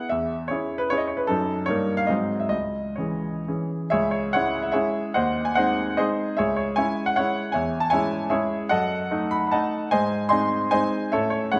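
Rustic and proud, this romantic classical dance in 3/4 and C# minor moves at 118-166 BPM with free rubato and dotted rhythms, cut from a longer piece. A clear, present grand piano plays solo and up front, spanning C#2 to B#5 and voicing chords such as D#7/G, G#7 and C#m, with a new section arriving at 3.9 s. Moderate recital hall reverb surrounds the piano, and the harmony turns to G# and then A near the end at 11.1 s.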